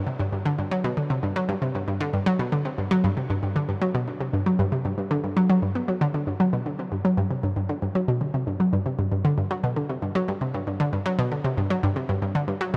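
Ambient music with a cosmic, expansive mood, moving at 116 BPM in a straight 4/4 feel and set in G major. A lone analog pluck carries the whole piece, playing from 0.1 seconds to 12.8 seconds in a range from G2 to B3. Its tone blends sawtooth and square waves, detuned and layered with noise, with a fast attack and short decay shaped by a plucked filter. The sound is round and bright and sits up front, thickened by chorus and echoed by delay. A huge ambient reverb with a long tail surrounds the part, and the music shifts into a second section at 6.3 seconds in this brief cut from a longer piece.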